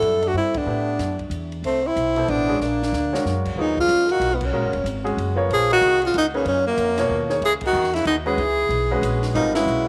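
A moderate spring reverb colours this brief slice of spiritual, searching modal jazz in a swinging three, where a close-miked tenor saxophone carries the melody up front with soft-attack vibrato and a touch of tape echo. Behind it, a distant, forceful trombone plays a second line, while a clear baby grand piano with short sustain comps, a woody pizzicato upright bass holds the low end, and a compact cocktail kit with dark cymbals, a high-tuned snare and punchy kick keeps time. The band hits accents at 0.5, 4.4, 7.6 and 9.5 seconds, and a drum fill ushers in the second section as the harmony darkens into minor ninth chords.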